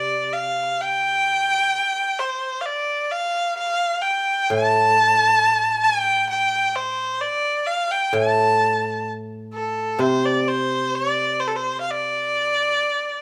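A clear, earthy erhu, played by a single performer, sings a graceful, tender melody up front with light vibrato and portamento, while a silvery, ringing guzheng played with fingerpicks supplies low accompaniment until 12.8 seconds, in this rubato Chinese traditional chamber excerpt at 65 BPM, captured by close, detailed microphones with light reverb.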